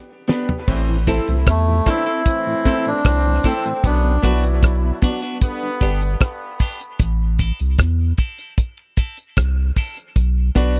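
A damped 1970s drum kit sets a straight 4/4 dub reggae groove at 76 BPM, opening with a short fill before fat snare, tight kick, rim clicks, hi-hat, toms and crash settle in up front, paired with a round sine sub bass that arrives at 0.7 seconds. The mood is meditative and deep, moving through A dorian over G, Am and Bm chords. A twangy, compressed electric guitar supplies accompaniment throughout, while a brilliant concert grand piano adds stabs from the background and a mellow tonewheel organ with chorus vibrato and slow rotary speaker sits darkly behind them. A clear trombone section carries a second line with light vibrato, and a reedy, breathy melodica steps forward with the melody from 1.5 to 4.3 seconds. Dub echo and high-pass filtering colour the guitar, piano, trombones and organ, the melodica also carries echo, and a filter sweep begins at 3.8 seconds, all captured in a dry, close 1970s-style studio sound in this cut from a longer piece.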